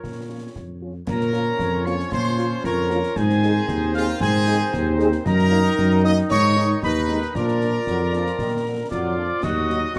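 A straight 2/4 pulse at 115 BPM drives this stern, resolute military-style march for wind band, a short cut from a longer piece that starts in Bb minor and turns to Eb minor at 5.3 s. A dark, close-miked tuba sits up front on the bass line, while a bright trumpet section with a soft attack carries the melody and a warm woodwind section, smooth on top with light vibrato, plays a second line. A mellow French horn section supplies accompaniment in the background, and concert snare drum, concert bass drum and clash cymbals keep the march close and dry, the cymbals dark in tone. At 1.1 s a pure, wooden piccolo joins high above with vibrato and tongued notes, and a tight, vintage-sounding trombone section adds sustained chords in the background. The harmony moves through Ab, Eb minor over Gb, Ab minor and Bb before settling on Eb minor, all in a light reverb that keeps the classical ensemble sound focused and formal.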